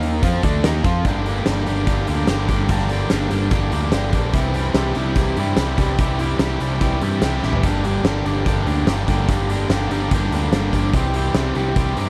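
A double-tracked, overdriven semi-hollow guitar riff sits up front in this gritty, driving classic rock clip, carried by a direct, bright picked electric bass and a big acoustic drum kit with a fat snare, punchy kick and pumping stone-room sound that breaks into a fill at 7.4 seconds, all under light reverb as the chords move between Gm and C.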